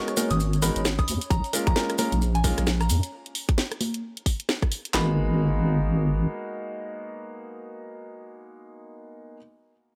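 A deep, wobbling bass sits up front in this bouncy, late-night slice of two-step UK garage, its rounded sine-and-triangle tone thickened by chorus and tube saturation as it runs from 0.3 to 6.3 seconds. Two garage kits drive the groove at 132 BPM in 4/4 with a swung sixteenth feel: one layers congas, hi-hat, rim click and a cracking snare, while the other adds handclaps, a tight kick and an overdriven snare, pushed up front from 1.0 to 5.1 seconds. A baby grand piano plays present stabs with long sustain and tape echo throughout, and a soft, pure FM bell carries the melody above it, gentle and mellow with chorus and tape echo. In the background, an airy, breathy pad with a detuned, noisy edge and sidechain pumping holds chords only until 3.1 seconds, accompanied by grainy acoustic maracas that also fall away at that point. The harmony moves from G#m9 to A#m7 and back to G#m9 in G# dorian, the whole passage wrapped in digital ambience and cut from a longer piece.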